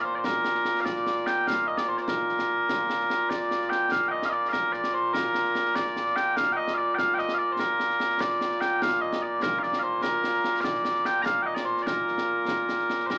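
Mellow, sweet small bagpipes open this proud, ceremonial excerpt of Scottish pipe music in 6/8 at 98 BPM in Bb major, carrying a continuous solo melody up front while close, acoustic concert snare and bass drum with dark cymbals join at 0.2 seconds, the band heard live in one room with moderate reverb and an AM radio sound.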